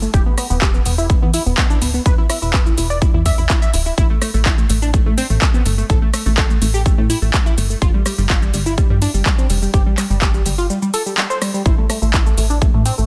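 A straight 4/4 pulse at 125 BPM drives this expansive progressive house fragment, where a punchy, up-front electronic kick with studio reverb anchors a big-room dance kit of handclaps, metallic hats, rim click and shaker while a dark, funky sawtooth-and-pulse-wave analog bass plucks beneath tight, nasal, detuned synth arpeggios carrying chorus and tape echo, with the bass, arpeggios and kit all breathing under sidechain pumping as the harmony moves from E5 to an unharmonized stretch at 4.0 seconds and a rootless Gsus2 at 11.7 seconds, all inside a dense, heavily limited modern master.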